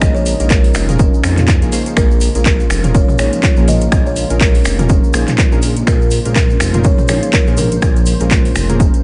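This driving, spiritual afro house cut opens with everything at once: a buzzing, woody kalimba melody carried on tape echo rides over a punchy, overdriven electronic kick up front and an overdriven house kit of finger snaps, handclaps, metallic hi-hats and toms, with a grainy tube shaker tucked behind. A smooth sawtooth synth bass with vibrato pumps against the kick, while round, soft-mallet marimba arpeggios and detuned, chorused analog key stabs, both pumping and echoing, sit in the background. A very quiet, warbling vintage pad holds sustained chords over a single minor-seventh harmony, all in a digital ambience with a soft, rolled-off top end.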